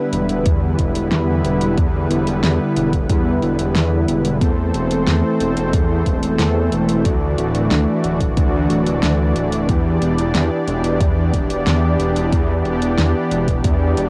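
A soft, mellow supersaw opens this moody, cinematic synthwave fragment in E minor at 91 BPM, holding smooth, full-bodied sustained chords that pump against the sidechain and carry a cassette-tape patina as they move from Em7 through Am/E and Dadd9 back to Em7. A thick, detuned saw bass with chorus sits up front beneath it, joined by a pop drum kit with a fat snare and metallic hats and a punchy electronic kick entering at 0.5 seconds. The home cassette recording places everything in a modest booth ambience, cut from a longer piece.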